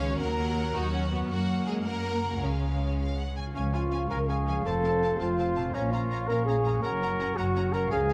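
Up-front bowed double basses and close cellos anchor this triumphant, adventurous cinematic cue in Db major at 110 BPM in 6/8, where lush violins with vibrato carry a soft-attack melody over a smooth second violin line, clear background violas and ringing, very quiet harp arpeggios, before a vintage-toned trumpet adds stabs at 3.5 s and, from 3.6 s, mellow, punchy French horns and bright trombones hold sustained chords while a hollow flute and a distant, roomy cor anglais add second lines, the whole cue sitting in a moderate scoring-stage reverb.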